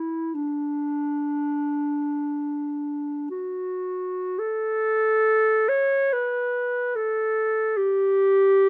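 Lyrical and serene, this short classical fragment features a single clarinet playing alone in free time, unfolding in an expressive way. The clarinet has a mellow tone with a smooth top, and it moves within the range of D4 to C#5 in D major. The piece is tuned slightly below modern standard pitch, with A4 at 436 Hz. The music falls into two sections, with the second beginning at 4.4 seconds and carrying on until the close at 8.7 seconds. The clarinet sits up front in a dry recording with little reverb, giving the playing an intimate presence.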